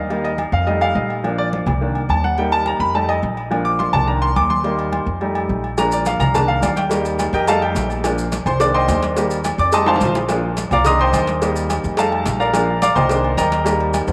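A clear baby grand piano and a dark, woody upright bass open this festive, joyful salsa excerpt at 212 BPM in Bb major, with ringing agogo bells and timbales and very quiet congas joining almost at once. The piano sits present and up front, carrying a solo across the whole passage over a repeating cycle of Eb, F7, Bb and Cm7. Beneath it, the pizzicato bass gives thumpy gut-string notes, while the metal-shell timbales and agogo stay in the background and the medium-tuned congas ring softly under the hands. At 5.8 seconds a round, low-tuned pairing of cowbell and bongos arrives, compressed and saturated, along with grainy, mellow maracas. A brief drum fill at 9.9 seconds punctuates the groove, and a wet spring reverb with a 2.7-second decay lends the recording a generous sense of space.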